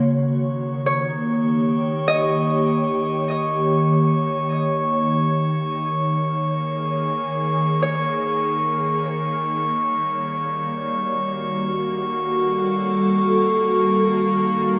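A dreamy, reverb-soaked mix with a softened top end and a faint mains hum frames this luminous, serene ambient passage, cut from a longer piece. An up-front, glassy FM pad with chorus, phaser and shimmer reverb holds slow-blooming sustained chords over a string-like sawtooth drone that fades in with vibrato, while a pure glass harmonica hovers high above. Between 0.9 and 10.2 seconds a mellow, fingerpicked Celtic harp rings out arpeggios through diffuse delay and shimmer as it fades, while the harmony drifts from Eb7 to Gsus2.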